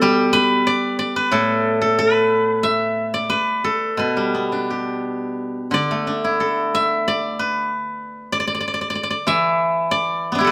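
Elegant and serene, this short passage of traditional Chinese solo plucked-string music features an acoustic steel-string zither, played up front with fingerpicks and sounding silvery and ringing from A2 to E5, drifting in rubato around 90 BPM in 4/4 for its full 10.5 seconds within the moderate reverb of a stone room.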